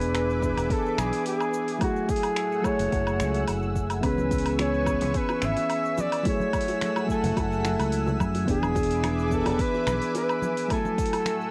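A warm, vibrato-laced flugelhorn sings a smooth, wistful melody over soft, round electric-piano-like synth keys, a lush detuned pad, a fingered electric bass and an overdriven deep house kit of metallic hi-hat, cabasa, finger snaps and woodblock, with a deep electronic kick arriving just after. This sunset chillout cut, with its gentle swing and minor-key seventh and ninth chords, brings in bright bongos and congas in the background at 4.2 seconds and a calm, glassy texture of drifting overtones at 5.3 seconds, while the bass drops out at 10.0 seconds. Cassette tape colours most of the parts, tape echo trails the horn and keys, and a small room gives the whole a homely, intimate feel.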